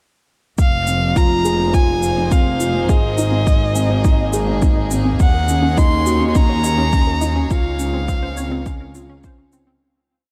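At 0.6 s this short, intimate and melancholic piano-and-strings electronica piece opens all at once at 104 BPM in 4/4: an up-front, overdriven electronic kick drum holds a deep four-on-the-floor pulse, a restrained shaker ticks beneath it, and a lush bowed double bass section sustains the root notes with tube saturation and sidechain pumping. Above them a distant chamber string section floats soft, sul tasto chords that also pump, while a single bowed violin carries a nasal, boxy motif-based melody with vibrato from Eb5 to C6. At 0.9 s a felt-muted upright piano enters with a dark, mellow 16-step arpeggiated riff, its thick felt and audible action noise caught through digital delay. Just after, a round, detuned analog pluck in the background adds a 12-step arpeggio that drifts against the bar, coloured by chorus and delay, with a filter sweep running across the whole piece. The music moves through Fm, Ab, Ebm7 and Bbmadd9/Db as one continuous build under studio reverb, fading out from 6.7 s to the end at 9.8 s.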